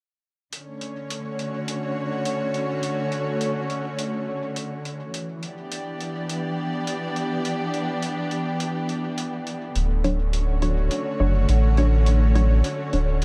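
Hazy and meditative, this ambient dub fragment at 104 BPM in 4/4 with a swung sixteenth feel rests on a dark, woody string section holding bowed chords with light vibrato, moving from Dmaj7 to Em7 and back. Beneath it ticks a muffled, pitched-down, overdriven electronic hi-hat. A round sub bass arrives up front at 9.8 seconds, and a muted sawtooth chord stab with analog chorus and dub echo joins at 10.0 seconds, the whole set inside a light reverb.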